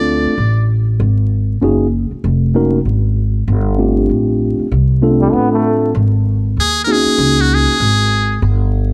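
A muted trumpet, woody pizzicato upright bass and a mellow tine electric piano open this smoky, swung jazz-hop excerpt together, with the piano's clean sus chords drifting between two neighbouring shapes over a bed of vinyl crackle and studio reverb. A clear, vintage-toned trombone slips in briefly at 5.2 seconds. The buzzy, punchy metal-muted trumpet then returns up front at 6.6 seconds for a short solo with scooped notes and light vibrato, as the piano drops out at 7.8 seconds and the bass carries on to the end.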